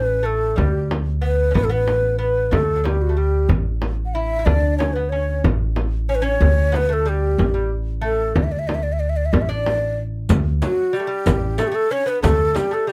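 Persian modal ensemble music in a stately, passionate 6/8: a breathy ney with vibrato carries the melody up front over a delicate, fingerpicked gut-string lute second line and a woody pizzicato upright bass, while a deep frame drum joins at 0.6 s and a riq with dark jingles enters at 10.3 s, all captured close and dry in this excerpt.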